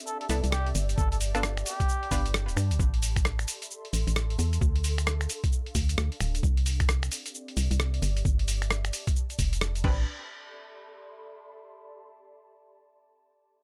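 An ethereal, airy pad opens this skippy, moody stretch of two-step UK garage, its detuned ensemble chorus and built-in reverb pulsing with sidechain pumping and lingering after the beat drops away, to about 11.8 seconds. Almost at once a cup-muted trumpet breathes a brief, veiled, intimate phrase touched with delay, while punchy, bright chord stabs with chorus and delay flash through the opening moments and return briefly near the end. Underneath, a hollow, organ-like FM bass sits dark and up front with percussive, decaying notes. The sampler-style drum kit of hi-hat, rim clicks, finger snaps, shaker and crash is swung, pitched down and gritty with tape character, joined from 1.0 second by a compressed, thumpy kick. Moving from Cmaj9 and G9 through Am7, Dm7 and onward to an Amadd9, the close, dry-sounding passage is cut from a longer piece.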